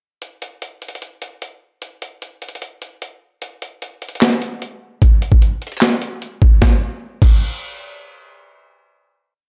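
A half-time trap beat at 150 BPM in 4/4 drives this short, triumphant yet wistful hip hop piece, carried entirely by an up-front, sampler-style breakbeat kit that runs from 0.2 to 7.3 seconds. The compressed, gritty drums pair a thumpy kick with a medium-tuned snare layered with handclaps, fast hi-hat rolls and a crash cymbal, moving through a breakdown before a final hit at 6.6 seconds. Light reverb and digital ambience wrap the dark production.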